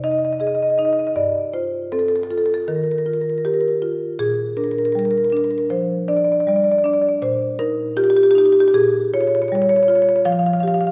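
A solo marimba played with medium mallets opens this short cut from a longer contemporary classical piece, sounding a rootless Fm7 before moving through G9sus4 and Ebadd9. The mood is reflective and hypnotic, set at 79 BPM in a straight 4/4, with the single instrument covering a span from G2 up to F5. Its padauk bars give a woody, boxy tone, and the marimba sits up front in the mix. The harmony settles on Bb6 at 4.2 seconds, then passes through Ebadd9/Bb and Db/Bb before arriving on Fsus2 at 10.2 seconds, just before the passage ends at 10.9 seconds. A wet recital hall reverb surrounds the playing, while a worn cassette quality adds a warbling pitch drift that deepens the hypnotic atmosphere.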